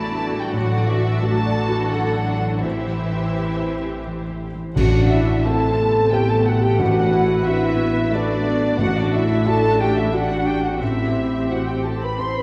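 In a rubato 3/4, this longing, moving cinematic film-score fragment sets veiled, con sordino violin sections on the melody and a second line over a felt-muted upright piano with audible action noise, dark muted violas, lush cellos and double basses, alongside a mellow, close-miked French horn section holding chords. At 4.8 s, with an accent from bright clash cymbals and concert bass drum, soft-malleted calf-head timpani and a pure silver flute enter, the whole bathed in a wet concert-hall reverb.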